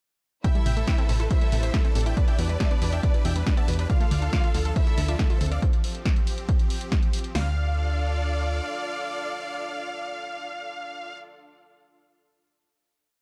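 A bittersweet, driving uplifting trance drop at 139 BPM in D dorian opens at 0.4 s with a punchy analog drum machine's four-on-the-floor kick, snare and open hats up front, a second drum machine layer of programmed hats and backbeat, a huge, thick supersaw lead playing a repeating sixteenth-note riff in thirds and sixths over a pedal note with sidechain pumping and tape echo, a bowed symphonic violin section carrying its own riff in octaves with digital delay, a wave-folded pluck arpeggio with dub echo, and a slow-attack supersaw pad holding sustained chords, joined at 0.7 s by a round, off-beat FM bass, until the drums and pluck stop around 7.5 s and the lead, strings and pad ring out on a final Dm chord in a dark, dry mix.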